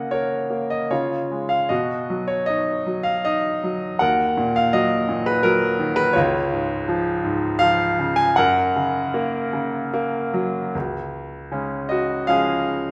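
A clear grand piano opens alone on an F# major chord over C#, setting a calm, tender mood in a lyrical classical style. Playing in 3/4 with a flexible rubato feel, the tempo drifts between 73 and 85 BPM as the harmony passes through C#, B and D# minor before settling back on F# at 8.4 seconds. The piano sounds natural and up front, its range spanning from C#2 to G#5, with a slightly low tuning of A4 = 437 Hz. A lush recital hall reverb with a 1.7-second decay surrounds the instrument, giving each chord a lingering glow. At 10.7 seconds a new section begins on a Db chord, and the passage ends at 12.9 seconds as a fragment cut from a longer piece.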